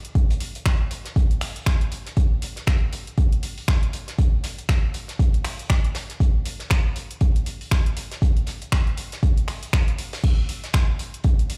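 A drum-only house groove in 4/4 at 119 BPM opens at 0.0 s with an overdriven deep house kit of crash cymbal, finger snaps and hi-hat, its layered electronic sound re-recorded in a small room, and the mood is sunny and soulful with a 58% swing on the 16ths. From 0.2 s a deep, overdriven electronic kick sits up front, joined by an acoustic soul kit whose hi-hat and fat snare sound mid-forward and rolled-off on top, trimmed by high-pass filters on the hats, snare and room. The whole is cut from a longer piece and sounds played through a big system in a bare stone room with little reverb.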